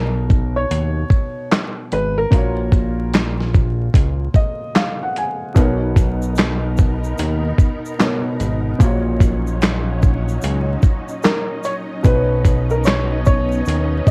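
This excerpt of melancholic, nostalgic lo-fi hip hop at 74 BPM with a swung feel opens on a woody upright piano melody over a soft, felt-muted upright piano with audible action noise, both dulled by a low-pass filter and cassette tape, while a fat sawtooth analog bass and a gritty, compressed sampler-style kit with a thumpy kick, handclaps, hi-hat, shaker and snare sit up front. A felt piano fill runs from 3.9 to 5.6 seconds, and at 5.6 seconds shimmering string-machine violins and a grainy tube shaker in the background join, the melody piano returning at 11.2 seconds over chords moving from Bmaj9 through Ebm7/Bb to Badd9. Light reverb, vinyl crackle and a home-cassette sound give the whole a worn, intimate feel.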